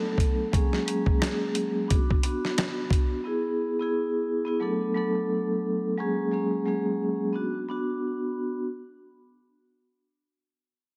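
Heavily compressed and radio-like in a moderate echo-chamber reverb, this dark, moody boom-bap hip-hop excerpt at 88 BPM in B dorian sets a ringing, mellow soft-mallet vibraphone with fast motor vibrato over chords moving from D6 through F#add9, Bm and E, while a gritty, tape-warm sampler-style soul drum kit with a thumpy kick, medium-tuned snare and swung hi-hat sits up front only from 0.2 to 3.1 seconds.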